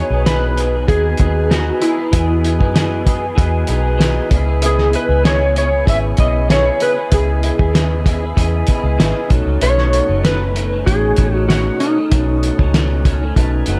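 A clean, dark lap steel carries the melody from the start, bathed in ensemble chorus and tape echo, over a slightly broken-up electric guitar with chorus and vibrato and a soft, flute-like tonewheel organ turning through a slow rotary speaker with a cassette-tape tint. This sunny, dreamy bedroom-pop fragment at 96 BPM in E major moves through Emaj7, C#m7 and B9, with a round, foam-muted fingered bass and a muffled, cloth-damped drum kit of fat snare, tight kick and hi-hat sitting up front. The production is dark and lightly reverberant, and the organ adds a short fill from 12.7 seconds before the cut at 13.8 seconds.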